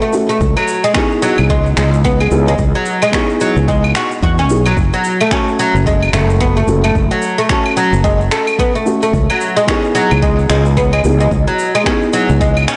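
A blown-out, overdriven mix bathed in lush hall reverb carries this hypnotic organic downtempo groove at 110 BPM with a swung 16th feel, where a bright, woody oud plays arpeggios up front with tape echo over a dark felt-muted upright piano with audible action noise, tape echo and sidechain pumping, while a punchy fretless electric bass with tube saturation enters at 0.4 s alongside a deep, layered electronic kick, joining overdriven electronic shaker, claves and finger snaps heard from the start, as the harmony moves from C#m7 to F#m and back.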